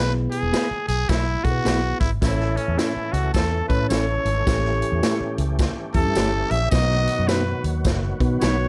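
A growling, raspy trumpet solos up front over a mellow tine electric piano and a round, foam-muted fingered bass, soon joined by a punchy swinging drum kit, dark clean guitar stabs and a jingly tambourine in the background, while a lightly overdriven tonewheel organ with chorus vibrato and key click adds thick sustained chords from 2.2 seconds in this danceable, dry-sounding slice of 1960s-style soul.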